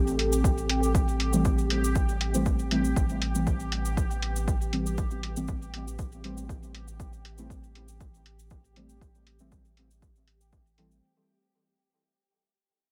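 A dark analog pad, a round analog bass and a bubbling, resonant stepped-filter texture open this cavernous, meditative dub techno excerpt, all three pumping against the sidechain, joined almost at once by grainy cabasa, a muffled, pitched-down hi-hat and a punchy up-front kick, before a soft, detuned chord stab steeped in dub echo, phaser and cassette-tape colour arrives at 1.3 s, the whole passage fading out through its 11 seconds in light reverb.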